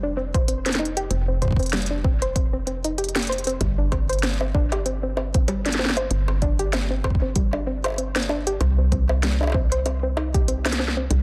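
A dense, heavily limited mix with light reverb frames this eerie, glitchy IDM excerpt at 96 BPM with a 16th-note swing, where a soft, nasal filter-pluck arpeggio with chorus and tape echo plays over a dark, woody FM bass through F5, G5 and Cm, while a deep, tape-warm electronic kick and an up-front organic electronic kit of bongos, smooth hi-hats and snare, re-recorded in a small room, enter at 0.3 seconds.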